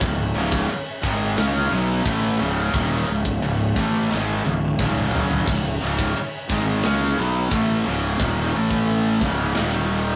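A straight, steady 4/4 pulse drives this aggressive, relentless heavy metal passage, cut from a longer piece, with a tight acoustic drum kit of tight kick, medium-tuned snare, crash and toms sounding big and mid-forward before a drum fill at 4.1 seconds and a stop at 9.7 seconds. Three picked electric guitars play the riff together: a scooped, high-gain part sits most prominent, a tight distorted guitar sits in the background, and a double-tracked high-gain guitar lies very quiet beneath them. Up front, a fingered electric bass with fuzz and overdrive adds a growly, direct-and-amped edge. Far underneath, a very quiet studio string section holds smooth, even bowed chords with vibrato. The harmony rests on a single minor chord before alternating it with brief power chords in the closing seconds. The rough rehearsal-room sound carries saturation and a moderate studio reverb.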